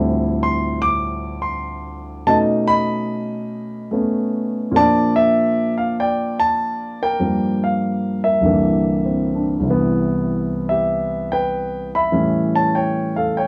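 Warm and sophisticated, this short excerpt from a longer piece of solo jazz features a dark, mellow grand piano placed up front, swinging across a broad range through lush chords like Dm11, Bbmaj7 and C9 before settling onto Cmaj7 at 9.7 seconds, all heard in a small, moderately ambient studio room.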